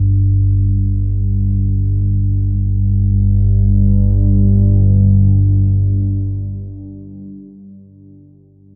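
A dark, warm production bathed in a huge ambient reverb opens this unsettling, desolate ambient fragment in free time, tuned slightly sharp to A4 = 441 Hz. A single deep, ominous drone of detuned triangle and sawtooth tones plays alone, up front, across the whole 7.4 seconds, rumbling between G1 and G2 with a slow attack, long sustain and lingering release, its sound thickened by built-in reverb and tape echo. The music shifts into a new section at 2.6 seconds, yet the drone holds its brooding weight throughout.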